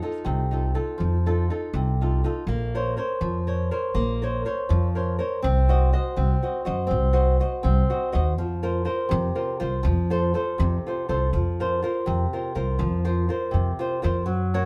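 A boxy, fingerpicked flamenco guitar sits up front from 0.0 s, finger squeaks audible, carrying the accompaniment of this romantic, wistful Italian folk serenade in a straight 6/8. From 0.3 s a woody, growly pizzicato upright bass on steel strings joins close beside it, as the harmony moves from F7 and Bbmadd9 into a Cdim at 5.4 s before settling between Fsus4 and F. The duo plays live in one room, wrapped in a moderate stone-room reverb, and the passage is cut from a longer piece.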